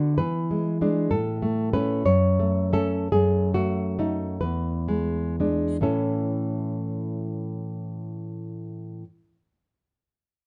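A tender romantic piece for solo classical guitar in 6/8 with free rubato, its up-front nylon-string guitar sounding dark, full-bodied and deeply classical as thumb-plucked notes move from E7 through F#m and a lingering F#m69 back to A, slowing down through the first 5.9 seconds before the guitar falls silent at 9.1 seconds, all set in moderate studio reverb in this excerpt from a longer work.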